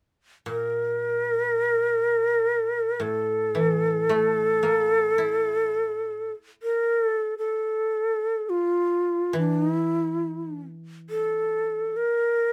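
Light reverb surrounds this brief passage cut from a longer piece of traditional Japanese chamber music, which unfolds in free time with a calm, austere mood, tuned to A4 = 438 Hz. The bamboo shakuhachi sits up front carrying the melody between E4 and Bb4, its end-blown tone breathy and warm, shaped by vibrato, tongued notes and an audible chiff. Beneath it, the koto supplies accompaniment from A2 to E4, its acoustic, woody voice heard dry, played with fingerpicks and set well behind the shakuhachi. Both instruments enter at 0.5 s, and the music moves into a new section at 7.6 s. The koto falls silent at 11.9 s, leaving the shakuhachi alone to close.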